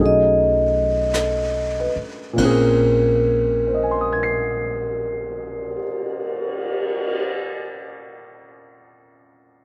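Jazz ballad in Bb minor at a slow 47 BPM with a swung 4/4 feel, melancholic and intimate in mood, taken from a longer piece. A vibraphone played with soft mallets and the motor off carries the melody, its metallic, ringing tone mellow and smooth, sitting highest in the mix until it stops at 5.8 seconds. A dark, up-front baby grand piano supplies the accompaniment with a vintage, mellow sound and is the last part heard, playing on alone until 9.6 seconds. Underneath, a pizzicato upright bass gives a woody, thumpy low end with a bright steel-string edge, while a vintage brush kit sits distant and roomy, with a high-tuned snare, punchy kick, hi-hat, ride and a cymbal swell under a rolled-off top. The opening slows down over its first 2.4 seconds on a B13 chord before settling onto Bbm7, and the close, dry sound keeps the small group feeling near at hand.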